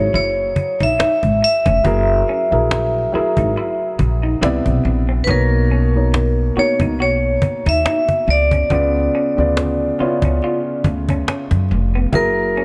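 Steeped in studio reverb and echo, this relaxed neo-soul R&B excerpt sets an up-front, ringing hard-mallet vibraphone melody with dub echo and slow motor vibrato over a dark, mellow upright piano, a thumpy gut-string pizzicato upright bass and a close, woody cajon with faint snares, while a twangy, slightly broken-up electric guitar through a small old amp plays a lo-fi second line with spring reverb in the background, the chords moving from F#9 through Cmaj9, Bmaj9 and C#7b9 before returning to F#9 at 12.1 seconds.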